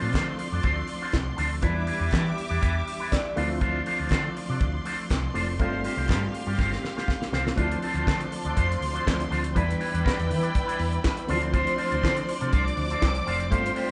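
Over a straight 4/4 disco groove at 121 BPM, a damped 70s drum kit sits up front with a fat snare, tight kick, hi-hat and handclaps, while a dark, round hollow-body bass carries the low end through a driving, sultry Dm7 to Em7 vamp in D dorian, cut from a longer piece. A barky, worn tine electric piano, lightly overdriven and slightly out of tune, adds fills around 2.9 and 6.8 seconds, alongside a bright, twangy envelope-filtered guitar and a clear, distant string section holding lush bowed chords. At 7.6 seconds, after a drum fill, a dark, woody second string line enters with vibrato and a smooth top, all set in a moderate large-room reverb with a rolled-off top.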